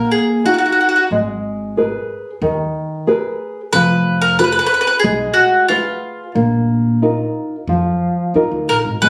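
In a straight 4/4 pulse, this passionate, wistful slice of an Italian folk serenade is led by a round, double-strung picked mandolin sitting up front. Beside it, a dark, full-bodied nylon-string guitar, thumb-plucked in a deep classical manner, carries the accompaniment through chords like Ebmadd9, Fdim and Bbsus4, while a woody pizzicato upright bass joins underneath at 1.1 seconds. The phone-captured sound, recorded in the room, carries light studio reverb and compression.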